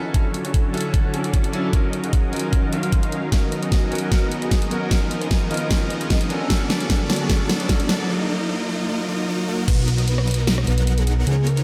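Playful and bright, this future bass excerpt at 151 BPM in a half-time feel and B lydian builds on a clear grand piano, an airy, breathy pad, lush detuned supersaw chords under a filter sweep, a dubstep kit with a huge snare, a knocking electronic kick and a very quiet riser and downlifter, pausing for a break at 8.1 s before the drop at 9.7 s brings in a fat, saturated analog bass and a soft, round octave-layered synth lead, the whole piece set in a dreamy, reverb-soaked mix.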